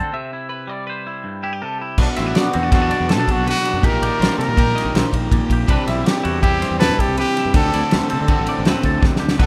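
A rough home demo mix with light reverb opens this intricate, wistful math rock and midwest emo passage in 5/4, cut from a longer piece. Until 2.0 seconds, a twangy electric guitar sits in the background beside a bright twelve-string electric guitar playing clean, picked arpeggios, both bathed in plate reverb. A trumpet with light vibrato then carries the pop-style melody, joined by a double-tracked overdriven guitar riff, a growly, punchy fingered bass, and a loose indie drum kit up front with a fat snare, tight kick and rolled-off top, which plays a fill at 9.0 seconds as the chords move from Bm7 through Eb/Bb and Cmaj7 to D7sus4.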